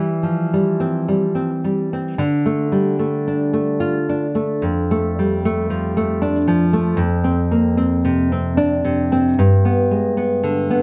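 A romantic piece for solo classical guitar, intimate and melancholic, moving at 75 BPM in 3/4 with uneven, rubato beats and tuned slightly low at A4 = 439 Hz. The dark, fingerpicked nylon-string guitar sits up front, where close, detailed microphones and light reverb catch every finger squeak as it spans F2 to F4. Cut from a longer piece, the harmony passes from C/E through Dm and Dm/F to Fsus4, arriving on G at 9.4 seconds.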